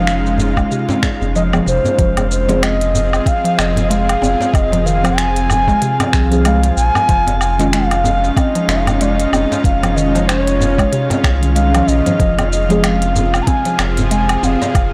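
Warm and earthy, this organic downtempo passage with a light swing is carried by a breathy, reedy bass bansuri melody with vibrato and digital delay, set over a round, up-front sub bass, a tense, nasal bowed-like drone with sidechain pumping, and a glassy, drifting glass-harmonics texture in the background. A woody mallet-like synth pluck plays arpeggios through chorus, phaser and delay, opening with a filter sweep over the first 2.0 seconds, while muted felt-like synth keys add dark, pumping accompaniment from 2.5 to 12.9 seconds. A soft, tape-toned electronic kick, an organic electronic kit of finger snaps, crisp hi-hat, shaker and woodblock with a clipped snare, and a deep, compressed djembe played with soft hands sit in a lush hall reverb, in a blown-out, overdriven recording cut from a longer piece.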